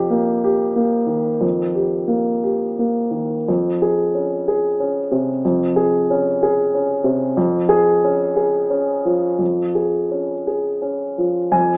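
Heard through a narrow AM-radio tone with moderate large-studio reverb and the feel of a live room, this brief fragment of a longer neoclassical minimalist piece gives a solo concert grand, up front, dark and mellow with a deep bass, playing a melancholic, reflective passage in a rubato 6/8 from 0.0 to 11.8 seconds as its chords move from Eb/F through Dbmaj7/F to Db/F, all resting on F in the bass.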